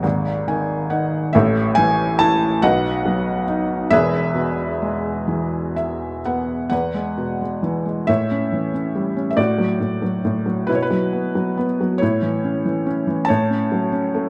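A rubato 6/8 lilt at 41-48 BPM in dotted quarters carries this peaceful, calm fragment of lyrical classical solo piano in E major, tuned to A4 = 441 Hz: a felt-muted upright, soft, mellow and intimate with audible action noise and thin felt, sits up front in a dark production with moderate scoring-stage reverb, brief felt piano fills appear at 0.0 and 5.3 seconds, and a second section opens at 6.7 seconds as the harmony moves through A7, D/A and Bsus4 toward F#m/A.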